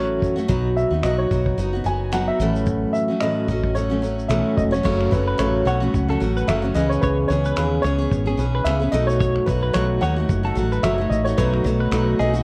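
A full-bodied, picked steel-string acoustic guitar with old strings sits up front in this heartfelt, carefree acoustic pop excerpt at 110 BPM in 4/4 with a light sixteenth-note swing, moving through B, A6, F#m, C#m7 and B7. A clear, intimate upright piano with audible action noise carries the melody through tape echo, over a round, dark fretless bass and a vintage brush kit of finger snaps, shaker, tight kick and dusky cymbals roughened by 12-bit sampler grit. At 4.9 seconds a clean, compressed twelve-string electric guitar adds echoed arpeggios, and the small-room sound carries the worn, warbling pitch drift of old cassette tape.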